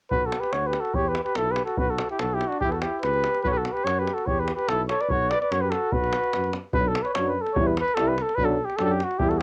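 From the first moment, a fiery, virtuosic stretch of Balkan brass band folk music in a lively 2/4 is under way, cut from a longer piece. A mellow cornet carries the melody up front with vibrato and a classical poise, colored by a cassette-tape grain, while a close-miked flugelhorn sings a second line beneath it. A tuba with a smooth top and a touch of tube saturation anchors the low end, and a tight, band-limited davul with a vintage acoustic tone drives the rhythm throughout. The flugelhorn drops out around 6.5 seconds, and soon after a clear euphonium with a soft attack and a trombone with warm, light vibrato slip in as background accompaniment, the flugelhorn returning briefly at 9.2 seconds. The whole band sits in light reverb with the intimate character of a home cassette recording.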